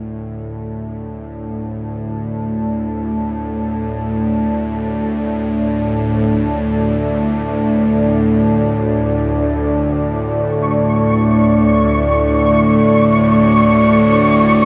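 A nasal, string-like bowed drone fades in low at the start of this cavernous, ominous dark ambient excerpt in free time. It is joined almost at once by a deep, detuned pad with chorus that also fades in beneath an immense, dark reverb, and at 10.6 seconds a grainy, flickering high texture drifts in over the sustained chords.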